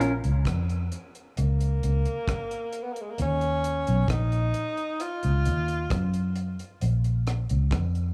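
A warm, distant tenor saxophone with light vibrato floats in at 1.4 seconds through a dub echo, carrying the melody over a dark, round, foam-muted fingered electric bass and a dry, tight-kicked reggae kit of hi-hat, kick and rim click in this meditative, deep dub reggae excerpt at 66 BPM in Bb phrygian, moving from Bbm to Ebm and back within a small room.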